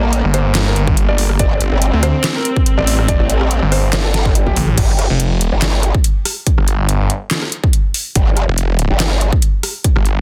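A half-time groove with lightly swung sixteenths drives this aggressive, chaotic heavy wobble dubstep drop, cut from a longer piece. A punchy, layered electronic kick and an up-front dubstep kit of deep snare, metallic hats, handclaps, rim clicks, toms and crash drive two basses: a wobbling, formant-filtered growl bass with chorus and overdrive, and a snarling, detuned sawtooth bass with a resonant moving notch and heavy distortion. For the first 4.8 seconds a rich, bowed string section holds a Gmadd9 chord with vibrato and sidechain pumping while a soft, felt-muted upright piano plays a mellow melody in the background through dub echo, then after a short drum fill the drums and basses carry on alone in a dense, heavily limited master with digital ambience.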